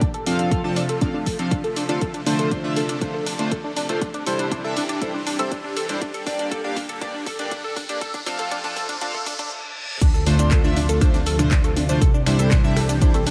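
Emotional and expansive, this progressive house excerpt at 120 BPM in D minor builds for 10 seconds under a filter sweep, with a lush supersaw pad in the background, a tight, driving sequenced synth arpeggio with chorus, phaser and digital delay, and a glossy, retro chorused polysynth playing up-front stabs, all pumping against a punchy, layered electronic kick and a tape-warm house kit of hi-hat, shaker, handclaps, finger snaps and crash, while a very quiet riser and reverse cymbal climb toward a brief stop. At 10.0 seconds the drop lands with an impact and a fat, saturated analog bass, joined by a very quiet, dark acoustic kit of snare and hi-hat and, from 10.4 seconds, faint electronic congas, toms and woodblock. Chords move from F through Dm7, Cadd9 and Gm, with light reverb and digital ambience around the mix.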